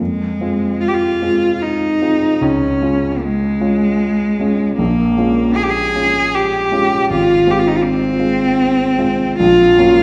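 Classical romantic music for cello and grand piano, solemn and melancholic in F minor at 77 BPM in 3/4 with a loose, rubato feel, where a single bowed cello sings a rich, smooth melody with vibrato over a vintage-toned, warm piano accompaniment moving through chords such as Fm, Db, Bbm7 and Gb/Bb, all heard from further back in a reverberant recital hall in this 10-second fragment of a longer piece.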